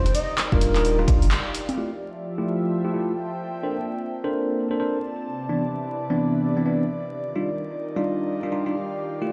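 Heard through a big sound system in a bare stone room with vinyl crackle and a moderate plate reverb, this sunny, bouncy two-step UK garage fragment at 129 BPM with a swung 16th feel opens on a breathy, flute-like synth lead, bright, bell-like tine electric piano stabs, a deep, round dub sub bass, an airy pad, a punchy, tape-warm drum machine of congas, handclaps, hi-hat and rim click, and an electronic kick. After a band accent at 1.3 seconds and a short break, a smooth, evolving analog pad enters at 1.8 seconds beneath the electric piano stabs, which carry a filter sweep and delay through to the end over Ebmaj9, Fmaj9, Bbmaj9 and Cmaj9 chords.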